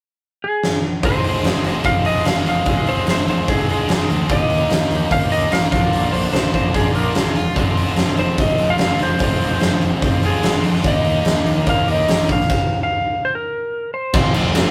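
A clean, compressed lap steel guitar with slide and volume swells opens this gritty, swaggering classic rock excerpt in F dorian at 146 BPM at 0.4 s; a big, up-front acoustic drum kit with a fat snare and punchy kick in a stone-walled room fills into the main groove at 1.0 s, where a sludgy, double-tracked overdriven guitar riff and a growly fuzz bass lurking in the background join over Fm, Eb and Bb changes, all captured as a rough rehearsal-room recording with tube saturation and light reverb, until the band stops at 12.5 s and lands back on Fm.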